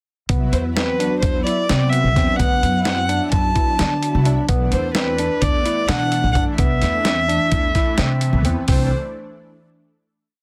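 Progressive instrumental band music in 9/8 at 257 BPM (eighths), intricate and bright, moving over a C lydian harmony from Cmaj7 to Bm and back before closing on a C chord at 8.7 seconds. A gritty, compressed sampler-style drum kit with a thumpy kick drives the uneven groove up front, while a woody pizzicato upright bass plays a syncopated riff and a barky, clean tine electric piano repeats an arpeggiated ostinato. A silky analog string pad with ensemble chorus sits in the background with soft syncopated quartal stabs, and from 0.5 seconds a dark, bowed solo violin carries a motif-based melody with vibrato, all in light reverb within a dense, heavily limited master.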